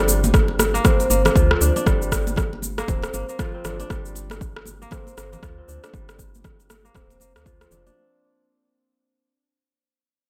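A deep, overdriven electronic kick drum sits up front in this earthy, driving afro house excerpt at 118 BPM in 4/4, with a 16th-note swing of 60% and a G minor center resting on a Gm7 chord. An overdriven electronic shaker and rim click share that forward placement, both carrying the layered, produced character of drums re-recorded in a large room, while bright, high-tuned congas with a thin, damped skin are played with hard hands, compressed and saturated in the background. Underneath, a woody, round FM bass with a soft, dark tone and fast, decaying notes pumps against the kick through sidechaining and carries a filter sweep across its span. A mellow, fingerpicked kora plays ringing, crisp arpeggios through a low-pass filter, tape echo and sidechain pumping, and it lingers alone after the rest of the parts have stopped by 7.9 seconds, ringing on until 9.5 seconds. The whole passage fades out over its first 8.0 seconds within a digital ambience.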